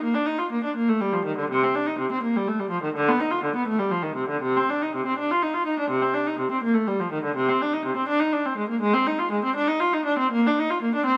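Close, detailed microphones catch the grain of a single bowed viola, set in a moderate concert hall reverb that lingers for about 2.2 seconds. This is a classical, baroque-style suite movement for unaccompanied viola, a brief 11.2-second fragment cut from a longer piece. It moves in a lilting 12/8 at 82 beats per minute on the dotted quarter, with a rubato feel that lets the pulse breathe. The mood is dance-like and radiant. One player, placed up front, draws a rich, reedy gut-string tone with light vibrato in period style, ranging from C3 to F4.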